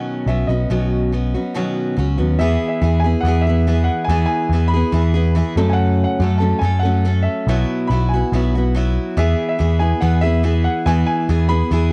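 A round, punchy electric bass sits up front from 0.3 s beneath a full-bodied, picked dreadnought acoustic guitar, while a clear, polished baby grand piano carries the melody through cassette-tape coloring and analog delay, giving this jangly, open-road fragment of folk rock and heartland rock, moving from Badd9 through E, F#m and Bsus4, the lightly reverberant intimacy of a home cassette recording.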